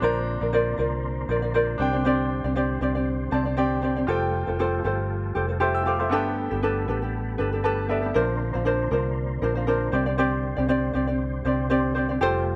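Up front sits a thumb-plucked ukulele, light and acoustic, picking its way through this sunny, carefree acoustic pop excerpt at 118 BPM in 4/4 with a gentle sixteenth-note swing. Beneath it, a vintage muted fingered electric bass gives a dark, round, punchy foundation, its foam-muted tone also placed prominently. A bright concert grand piano adds brilliant, polished accompaniment with short sustain, dropping in fills around 3.1 and 7.4 seconds before falling away at 8.2 seconds. In the background, a tonewheel organ holds smooth, clean sustained chords colored by chorus vibrato and a fast rotary speaker. The harmony moves through Bbadd9, Csus2, Fadd9 and Gadd9 before returning to Bbadd9, with light reverb giving the whole a relaxed, open feel.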